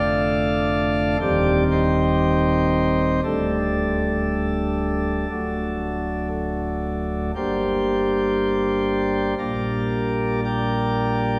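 A solo pipe organ, voiced with light, sparkling flute stops and placed up front, carries this solemn, grave chorale-style classical excerpt in G minor at a flexible, rubato 59 BPM in 4/4. Across about 11 seconds it moves from Dm/F and Cm/Eb through a suspended Dsus4 that settles onto D before arriving at Gm and Gm/Bb, its romantic voicing spanning the deep bass up to the treble. A wet church reverb with a three-second decay lends the playing a spacious, hallowed air.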